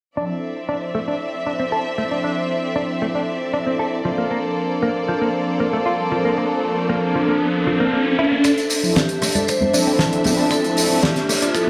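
Sleek and cosmic, this nu-disco piece opens with round, detuned synth brass pumping alongside a smooth, up-front bowed violin section and a clean, picked electric guitar riff over Dm9 and Bbmaj9 chords, before an electronic riser enters at 6.1 seconds and a build-up begins at 8.4 seconds, bringing a bright, hard-mallet vibraphone melody, a damped 70s drum kit with a fat snare, a tight kick drum in the background, a filter sweep on the guitar and, from 9.0 seconds, high-tuned ringing congas, with the mix set in a stony room reverb.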